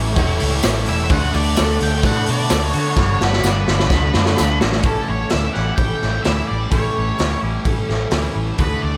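A straight 4/4 pulse at 128 BPM drives this wistful, dreamy shoegaze and dream pop excerpt in A mixolydian, where a gritty, up-front garage drum kit with a punchy kick and a fill sits over a dark, round, foam-muted fingered bass, a shimmering twelve-string acoustic guitar plays arpeggios through ensemble chorus and delay, thick fuzz and twangy clean guitars carry riffs (the twangy one with reverse reverb) alongside a phased, double-tracked overdriven guitar and a very quiet ethereal pad that both stop at 4.8 s, a jingly tambourine adds percussion until 4.5 s, and an octave-fuzz lead guitar with delay carries the melody from 0.9 s, set in a small room.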